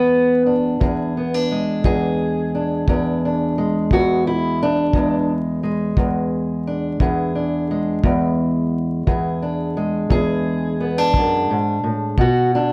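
A dark, crackling vinyl-tinged recording in a snug booth carries this rollicking, swaggering acoustic country blues excerpt in E mixolydian at 58 BPM in 12/8, where a woody, boxy parlour steel-string guitar with old strings takes the fingerpicked lead up front from 0.0 seconds, sitting on an E7 before turning to Bm at 12.2 seconds, while a smooth, punchy kick drum played with brushes thumps underneath from 0.8 seconds.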